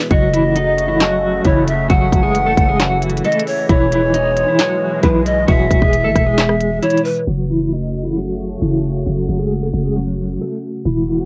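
Breathy, chiffy cane pan pipes open this dark, brooding trap excerpt, carrying a second line over a detuned sawtooth pad and a produced electronic drum kit with a hard-clipped kick, a sharp snare, crisp hats, handclaps and rim clicks. The tempo sits at 134 BPM in a half-time feel, in F# dorian, tuned slightly flat to A4 = 438 Hz. A clean, picked electric guitar carries the melody through tremolo, while a growling, buzzy 808-style bass with a fast attack and decaying tail holds the low end beneath chords moving from F#m to E and back. The pad evolves slowly with a resonant filter swell and chorus. The pan pipes drop out at 7.3 seconds, where a filter sweep marks a new section, and a faint electronic swell rises in the background at 11.1 seconds. The whole mix has the hazy, rolled-off character of a home cassette recording, with light reverb and tape echo trailing the pipes.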